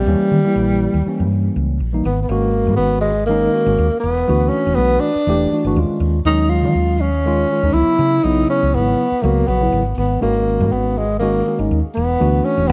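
Lightly reverberant and intimate, this short cut from a longer electric jazz fusion piece moves at a driving, funky 121 BPM in straight 4/4 in G# minor, with a breathy, whispered tenor saxophone carrying the up-front subtone melody with vibrato and scooped notes, a mellow tine electric piano playing clean accompaniment through built-in speakers, and a round, punchy hollow-body short-scale electric bass anchoring the low end as the chords move from Eb7b9 through G#sus2, Em9, D#m9 and C#m7.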